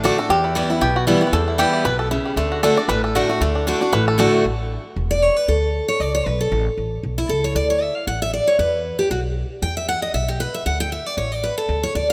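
Bluegrass at a brisk 232 BPM in D major, lively and virtuosic, with a light swing on the eighth notes in this short cut from a longer piece. A five-string banjo played with fingerpicks opens with a twangy, percussive solo and carries the melody until 4.4 seconds. A picked steel-string acoustic guitar sits up front throughout, full-bodied and bright with fresh strings, first as accompaniment and then taking its own solo from 4.4 seconds to the end at 12.1 seconds. Underneath, a pizzicato upright bass supplies a woody low end across the whole passage. The harmony moves from E minor to D, then mostly through open fifths on A, D and E during the guitar's turn. A wet plate reverb with a long tail colours the rough home-demo mix.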